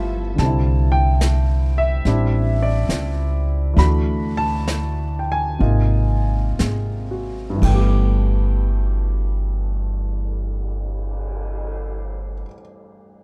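A tender, intimate jazz ballad fragment in G major swings gently at 56-73 BPM, easing its pace over the first 7.6 seconds as an up-front concert grand piano with deep bass and audible action noise, a woody pizzicato upright bass and a vintage brush kit with dark cymbals and a punchy kick move through C, Am7, D and Ab before settling on G69, in a close, dry and detailed recording.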